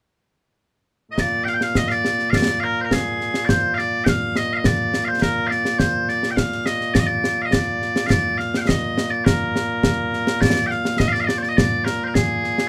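A straight 4/4 pulse at 104 BPM drives this ceremonial, stirring fragment of Scottish pipe music in Bb mixolydian. Loud, piercing bagpipes enter at 1.1 seconds and carry the continuous melody up front, and concert snare and bass drums follow at 1.2 seconds, sounding close and dry with bright cymbals. A light reverb surrounds the performance until it breaks off at 12.7 seconds.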